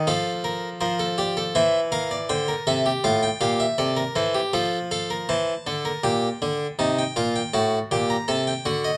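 In a straight 4/4 at 80 BPM, this solemn yet driving passage, cut from a longer baroque-style three-part fugue, is carried by a single French-style harpsichord spanning A2 to Bb5, its plucked tone nasal, thin and bright and placed up front in a light reverb. The harmony moves from F through C7/E and F/A back to F, and at 6.0 seconds a new section turns toward Gm/Bb and D7/A before the cut at 9.0 seconds.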